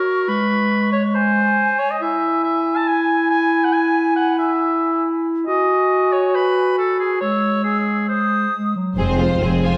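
In a straight 4/4 at 138 BPM, this cinematic cue from a heroic adventure score feels adventurous and determined. For the first 9 seconds the woodwinds carry it: a clear oboe sits up front on a second line, an airy concert flute with vibrato floats higher and more distant, and a warm clarinet adds a lower line, all over harmony that moves from G#sus4 through E, F#sus2 and C#m/G# to G#. At 9.0 s the orchestra arrives on an F minor chord, with a lush violin section taking the melody while a second violin section and a focused viola section play bowed lines beneath. Soft-attack French horns hold sustained chords in the background, and cellos and chamber double basses anchor the bass. The strings and horns last only until 9.8 s, where this cut from a longer piece ends, and a wet scoring-stage reverb gives the whole cue a sense of space.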